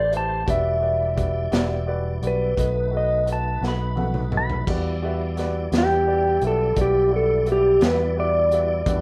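Over a straight 12/8 pulse at 57 BPM, this soulful, smoky slow blues in E minor sets a dark, slide-played clean lap steel melody with volume swells and plate reverb up front over a crunchy, saturated breakbeat kit that enters at 0.1 s and plays a drum fill from 3.6 to 4.7 s, a round, punchy fingered electric bass, a woody upright piano and a lightly overdriven tonewheel organ with chorus vibrato and slow rotary speaker, all moving through Em7 and B7 in a rough home demo mix cut from a longer piece.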